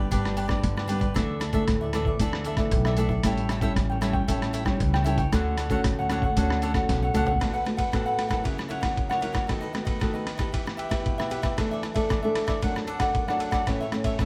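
Playful and sunny, this samba and choro piece sets a bright, crisply picked cavaquinho up front beside a fingerpicked classical nylon-string guitar, over a gritty, compressed, pitched-down trip hop sampler-style drum kit with a thumpy kick and medium-tuned snare. A woody pizzicato upright bass on gut strings plays through the opening section until a drum fill at 6.9 seconds leads into the second section at 7.4 seconds, where the bass stops. The music sits in a small, reverberant room, heard from further back.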